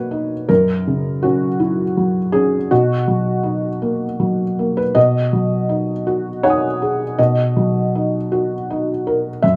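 A close, softly muted sound fills a room with light reverb, placing a felt-muted upright piano up front, where the mechanical noise of its action can be heard. This brief passage of peaceful, intimate neoclassical minimalist piano drifts in a rubato 3/4, the solo instrument spanning F#2 to D#6 with a mellow, short-sustained tone. Its gentle harmony moves from F#7 to Bmaj7, through G#m7/B and back to Bmaj7 before the clip ends at 9.6 seconds.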